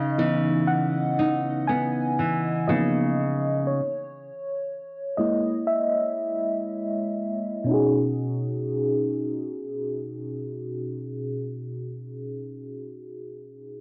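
Romantic and smooth, this slow, lightly swung R&B passage is cut from a longer piece and opens with an FM electric piano, layered with a soft pad, carrying a lush, dreamy solo through its first 7.7 seconds as a filter sweep moves across it, colored by chorus, tremolo and cassette-tape character. A bright, fingerpicked nylon-string guitar plays up-front classical arpeggios through analog delay until 3.8 seconds, while the chords drift from C#m9 through C#13 to a closing B6. The whole has the mellow, low-passed feel of a home cassette recording in a moderate studio reverb.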